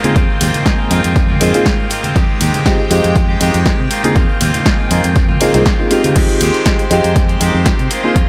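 A sensual, funky filtered disco house excerpt opens with a dark, boxy baby grand piano under a phaser, lush string-machine chords in the background thickened by ensemble chorus, a twangy, clean guitar riff roughened by 12-bit sampler grit and tape echo, an overdriven analog drum machine with snare, hi-hat, ride and crash, and distant congas and tambourine that play until 6.1 seconds, while an up-front punchy kick and a tube-saturated fingered bass join at 0.2 seconds over Ab6/9 and Fm9 harmony, with sidechain pumping on the piano, strings, guitar, bass, hats and cymbals in an echo-heavy mix.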